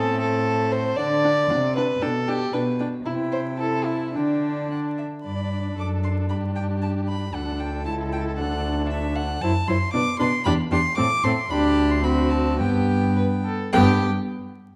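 A brisk, straight 2/4 pulse at 105-116 BPM drives this lively, cheerful classical-period movement for string quartet in G major, cut from a longer piece. The first violin carries the melody high above the ensemble with a rich, close, reedy gut-string sound, while the second violin traces a supporting line in a warm tone touched by light vibrato. The viola fills the middle with bowed accompaniment, its top end smooth, and the cello anchors the bass with a full, up-front presence that sits loudest in the blend. All four players bow in period style, and the harmony moves through G, D and C before turning toward D and B minor, then settling back home on G. The tempo slows from 11.0 to 13.7 seconds as the phrase closes, and a brief new section begins just after. A moderate recital-hall reverb surrounds the quartet in a dark production, with vinyl crackle beneath the strings.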